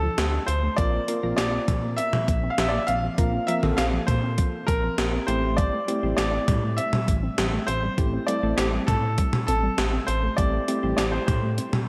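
A big arena-like hall reverb frames this melancholic, cool synth-pop excerpt, where a clear, up-front baby grand piano carries the melody over a dark, gliding sawtooth bass, a gated 80s digital drum machine with a thumpy kick and gated reverb snare, mellow detuned electric-piano-like synth keys entering at 0.8 seconds, and soft pluck arpeggios tucked in the background with chorus and slapback echo, all moving through Dm, Bbsus2 and Am7.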